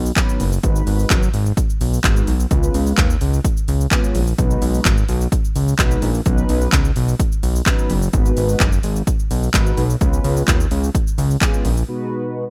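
A fat, thick analog bass opens this energetic, driving dance-pop excerpt, its detuned sawtooth tone sitting up front and pumping under sidechain compression. A house drum kit arrives almost at once, layering a punchy kick, handclaps, a shaker and tape-warm hi-hats into a punchy, produced electronic groove. Mellow synth brass follows at 0.2 seconds as accompaniment, its round, dark, detuned sawtooth and triangle tone softened by chorus and a filter sweep, set lower in the mix than the bass and drums. The harmony cycles through Badd9, G#m7 and C#7 with a dorian colour. Bass and drums drop out by 11.9 seconds for a short break, leaving the brass to ring on a G#m7/B chord in a dry, rough home-demo mix.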